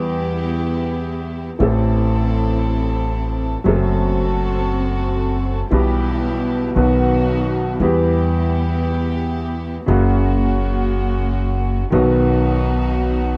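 A dark production with moderate club reverb frames this elegant, passionate tango in free time and E harmonic minor, where a brilliant, woody upright piano carries the accompaniment up front, a growly pizzicato upright bass sits up front beneath it, and an intimate chamber string section adds soft-attacked, sul tasto stabs with light vibrato through a 13.4-second cut from a longer piece that moves from Em through F#dim and B before returning to Em.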